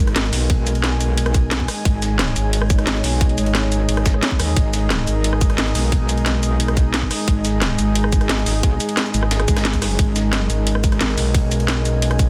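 A metallic wobble bass drives this tense, mechanical slice of dark technical drum and bass, its aggressive, saturated FM tone sitting up front with tube saturation and chorus until 11.0 seconds, when a thick, growling FM bass takes over for the closing moments. Underneath, a tight electronic kick enters at 0.5 seconds alongside an up-front layered kit of cracking snare, metallic hats, rim click and shaker, while a very quiet, gritty, pitched-up jungle-style kit adds ride cymbal and an overdriven snare from a larger room. A deep, moody analog pad holds sustained chords in the background, its detuned, wave-folded tone roughened by vintage 12-bit sampler grit and sidechain pumping. Higher up, a warbling, nostalgic lo-fi pad drifts with chorus and its own reverb, also pumping, and a faint electronic swell sounds between 9.5 and 10.0 seconds. The mix carries light digital ambience and a dense, heavily limited modern master, and the clip is cut from a longer piece.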